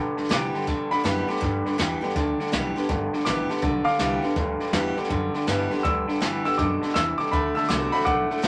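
This short cut from a rowdy, upbeat rockabilly number opens with a bright, boxy parlour acoustic guitar playing picked accompaniment, an up-front electric guitar playing a twangy, slightly broken-up riff through a small old amp, and a thumpy upright bass plucked on dark gut strings. A jazz kit played with brushes joins at 0.2 seconds, its boomy kick, medium-tuned snare and hi-hat sounding distant and roomy with a rolled-off top. At 0.3 seconds an upright piano with a woody, natural tone takes the lead, soloing high in the treble above the band. The groove runs at 163 BPM in 4/4 with a 65% swing on the eighth notes, sitting on G major until a turn to D7 at 7.3 seconds. The electric guitar's compressed, lo-fi bite and the piano carry the most presence, while a moderate studio reverb gives the whole band a modest sense of space.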